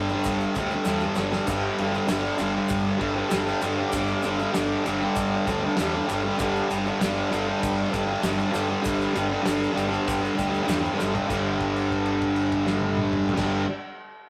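A rough rehearsal-room recording with saturated grit and a stone room's moderate reverb frames this swaggering, rowdy garage rock cut from a longer piece, moving at a straight 98 BPM in 4/4 in G major. An up-front, double-tracked fuzz guitar riff leads over a fuzzy, overdriven fingered bass, while a cloth-damped, thuddy drum kit with a fat snare and dark cymbals sits in the background beside a grainy egg shaker. A very quiet, reedy combo organ adds sustained chords from 1.4 seconds, and after a drum fill at 11.0 seconds the band moves into a new section built on a held note from 11.3 seconds.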